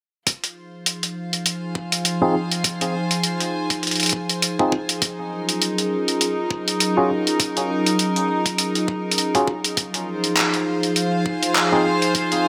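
A barky, overdriven tine electric piano cuts through this playful, gritty glitch hop excerpt, its stabs entering at 2.2 s with fast tremolo, a low-pass filter, digital delay and sidechain pumping, as if played through a combo amp. Beneath it, a warbling, nostalgic pad holds sustained chords with chorus, its own built-in reverb and vintage 12-bit sampler coloring, pumping to the sidechain while a filter sweep moves across it. A rich chamber string section with a reedy, gut-string tone fades in from 0.3 s, adding a bowed ensemble texture that also pumps. The drums pair an up-front, pitched-down sampler-style kit of handclaps and hi-hat, treated with gated reverb, with a knocking, layered electronic kick that is high-pass filtered, riding a swung 4/4 groove. The harmony moves from Fm7 to Ebm11 at 5.0 s and back again, and the bright 1980s-style digital mix sits in a lush hall reverb.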